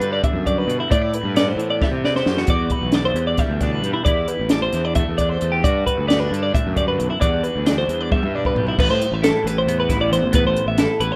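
Math rock with a midwest emo tinge, this intricate, wistful excerpt moves at 267 BPM in 7/8, with two bright, twangy twelve-string electric guitars weaving a phaser-washed accompaniment beneath chiming high arpeggios touched by slapback echo. A growly, fuzz-drenched fingered bass sits up front, while a compact cocktail drum kit with a punchy kick and high-tuned snare adds fills at 1.8 and 8.1 seconds. Lush jazzy chords such as Gmaj7, Am9 and C69 colour the changes in a rough home-demo mix with light reverb, shifting into a new section at 8.8 seconds.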